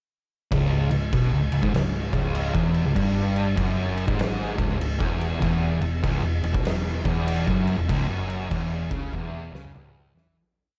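A thick, double-tracked fuzz guitar enters at 0.5 s with a distorted single-note riff, doubled by the round, punchy tones of an overdriven hollow-body short-scale bass and driven by an oversized low-tuned drum kit with a fat snare, boomy kick, crashes and toms in a big half-time groove. This sludgy, hypnotic stoner and doom metal piece swings its 8ths and moves from C#m to E5, with the guitar and drums sitting up front, the drums gritty and saturated in a bright stone room, and the mix kept dry overall. The music fades out from 7.9 s as a drum fill carries it to the end.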